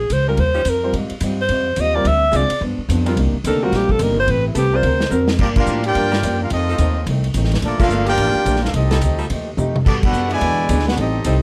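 A clear alto saxophone with vibrato opens this dramatic, swinging big band piece in G minor at 215 BPM, over a woody, thumpy pizzicato upright bass and a vintage drum kit with dark cymbals and a punchy kick. A short-sustain baby grand piano, a boxy picked archtop guitar and a warm, tight saxophone section in the background fill out the harmony. At 5.4 seconds the alto gives way to a smooth-topped trumpet section carrying the melody and a trombone section on a second line, with band accents punctuating the passage, all captured by close, detailed microphones with light reverb.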